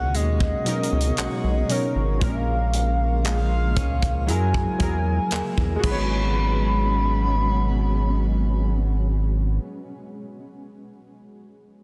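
Contemporary R&B in G# minor at a slow 58 BPM, moody and longing, where a round, horn-like synth lead carries the melody through chorus, phaser and tape echo over full-bodied analog keys, a blurred granular cloud pad pumping beneath its own reverb, clean direct-recorded electric guitar arpeggios tucked in the background with tape echo, and an up-front rubbery square bass, while a modern drum kit of tight kick, hi-hat, handclaps and crash, its snare softly clipped, drops out at 6.1 s in this dense, heavily limited small-room mix cut from a longer piece.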